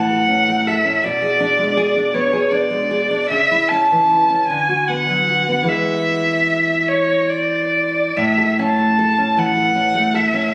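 Romantic duo for violin and classical guitar, tender and serene, drifting in rubato 6/8 at 45-55 BPM in A major, where a dark, woody solo violin sings the bowed melody with vibrato and a touch of tape echo over full-bodied fingerpicked nylon-string guitar accompaniment, both up front in a light reverb with a phone-in-the-room character and compression, in a 10.5-second passage cut from a longer piece that moves from A through E and settles back on A.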